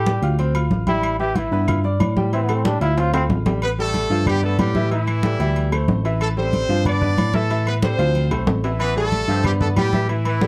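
Passionate and driving, this salsa excerpt in A minor at 185 BPM opens with a brilliant, forceful trombone solo over a bright concert grand piano, a gritty, barky overdriven tine electric piano carrying the bass, thick-skinned damped congas, ringing agogo bells and timbales, and faint woody claves, before a punchy, tight horn section takes over the melody at 3.6 seconds and a distant, roomy saxophone section adds a second line from 8.8 seconds, within a dark production touched with light reverb.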